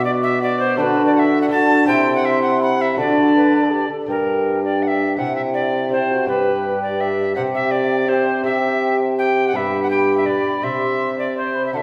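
A festive, stately renaissance-style consort dance in triple time rings through a reverberant church or concert hall, its hollow, close-miked silver flute singing the melody over an airy, chiffy alto recorder second line, a distant bright trombone and delicate fingerpicked lute in accompaniment, and a punchy, smooth-topped bassoon bass, all five playing from 0.0 to 11.8 seconds as the short cut moves from its opening section into a second at 4.1 seconds.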